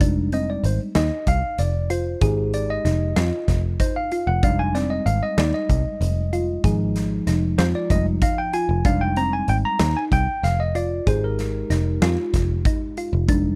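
Driving and intricate, this progressive instrumental in 7/8 features a clean, up-front tine electric piano soloing over a single Fm7 chord, with a round, tine-like FM synth pluck weaving gentle, dark arpeggios through chorus and phaser, a dark, foam-muted picked electric bass, and a huge acoustic arena drum kit with a punchy kick and medium-tuned snare, all captured in a dry, close 1970s-style studio sound in this brief 13.6-second cut from a longer piece.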